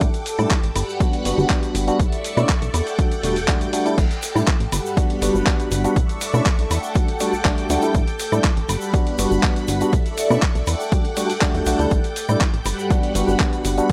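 A dry, gritty hardware recording with digital ambience frames this feel-good, funky filtered disco house excerpt at 121 BPM, where an overdriven, punchy electronic kick sits up front beneath a tape-dusted sampler-style kit of hi-hat, handclaps, cabasa, woodblock and crash, a plucky, detuned analog bass, a worn, slightly out-of-tune tine electric piano through a combo amp with phaser, and lush vintage string-machine chords with phaser and ensemble chorus, most of them pumping with sidechain, cycling A7sus4, Gmaj7, Bm11 and Em11, while a faint egg shaker joins at 4.0 seconds.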